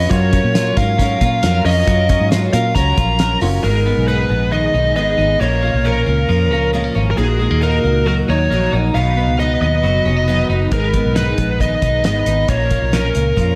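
A dark, high-gain lead guitar sings the melody up front through distortion and a diffuse ambient delay in this wistful, bittersweet slice of jangly indie pop, over shimmering, octave-doubled picked twelve-string acoustic guitar with ensemble chorus, clean, compressed twelve-string electric arpeggios, a round, foam-muted vintage bass, a woody, slightly detuned upright piano with audible action noise that stops at 3.7 seconds, and a cloth-damped, thuddy drum kit with a fat snare and tight kick that drops out after the opening and returns at 10.7 seconds, all set in a dreamy, reverb-soaked mix.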